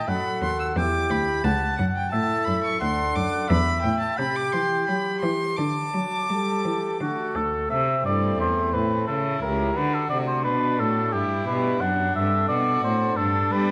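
A warm oboe with light vibrato leads up front in this radiant, dance-like baroque-style sonata movement in 3/4 at 88 BPM, tuned to A4 = 444 Hz, as a rich, smooth-topped single violin weaves a second line, a clear, focused cello anchors the bass up front, and a thick pipe organ on foundation stops supplies romantic continuo voicing, all set in a wet recital hall with a 1.4-second reverb tail before the music cuts off at 13.7 seconds.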